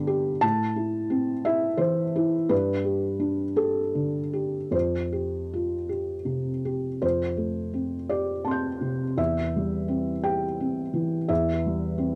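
Melancholic and reflective, this short neoclassical minimalist piano fragment drifts in a loose, rubato 6/8, with a solo felt-muted upright piano playing the whole 12.2 seconds across a range from E2 to G6. The thick felt gives the instrument a dark, intimate, mellow tone with short sustain and audible action noise, and it sits up front in a modest booth ambience captured on a home cassette recording. The harmony moves from Am through Gadd9 and Fsus2, then a second section begins at 7.0 s, shifting to Fadd9 and moving to C/E.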